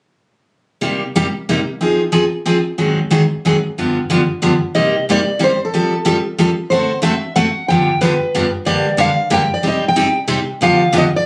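A brisk 184 BPM jazz waltz in 3/4 with a 60% swing on the eighths sets a virtuosic, bittersweet mood in C minor, where a picked steel-string acoustic guitar with a full-bodied jumbo tone and audible finger squeak comps through chords like Cm7, Fm7, Ab7 and G7 from 0.8 seconds, joined at 4.7 seconds by a second picked jumbo guitar whose bright, fresh-stringed melody sits up front, the pair captured on a phone amid a club's moderate reverb in this fragment of a longer piece.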